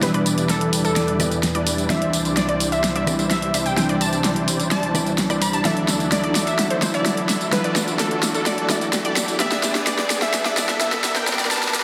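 Anthemic and powerful, this festival progressive house build-up at 128 BPM sets a crystalline wavetable pluck melody with chorus and delay over a huge, detuned supersaw riff shaped by a filter sweep, backed by a mellow felt-muted upright piano, a warbling vintage pad and a punchy, bright arpeggiated pluck, while an overdriven, up-front dance kit with a massive snare drives a continuous drum fill, a very quiet riser creeps in at 1.7 seconds, and the Em7–Cadd9–Dadd9–G progression rings through a dense, heavily limited master.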